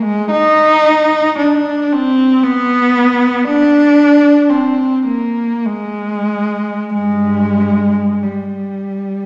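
A solo cello carries this short classical passage, its dark, intimate tone sitting up front and close with a soft attack, vibrato and an airy, sul tasto bow sound. The mood is meditative and lonely, unfolding freely in 3/4 with a rubato feel at roughly 45 to 58 BPM. The single player ranges from G2 up to Eb4, and the top of the tone stays smooth. A wet scoring stage reverb with a 1.6-second decay surrounds the bowed line, lending it a spacious, lingering halo. Lasting about 9.3 seconds, the fragment is cut from a longer piece and never leaves its opening section.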